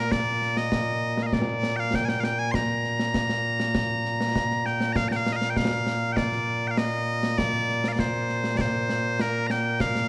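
Loud, piercing bagpipes carry a proud, stirring Scottish traditional melody in Bb major at 99 BPM, joined at 0.1 seconds by acoustic concert snare and bass drum with dark cymbals in a small room, while light reverb and the warbly pitch drift of worn cassette tape color this short cut from a longer piece as it shifts into a new section at 5.0 seconds.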